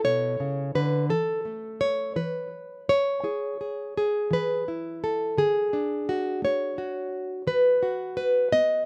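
Folk in a gentle, warm mood, this brief fragment of a longer piece features a solo fingerpicked nylon-string guitar in a classical style, placed up front and played with rubato at around 57 BPM in 6/8, moving from a rootless A through Esus4, E and D to B/D# across a range of B2 to D#5, with audible finger squeak and light reverb from an outdoor recording.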